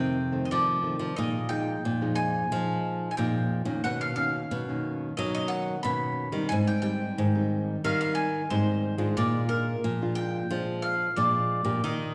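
Samba and choro at a straight 90 BPM in 4/4, this festive, joyful passage is cut from a longer piece, with a bowl-back mandolin carrying the melody up front in a bright, picked tone from its double strings. A small, bright fingerpicked nylon-string guitar provides up-front accompaniment with audible finger squeak, while a second nylon-string guitar plays a warm, classical bass line. All three play throughout the 12.1 seconds, moving through F7, Bb7sus4, Bmaj9, Abmaj7 and Bb7 inside the wet reverb of a recital hall.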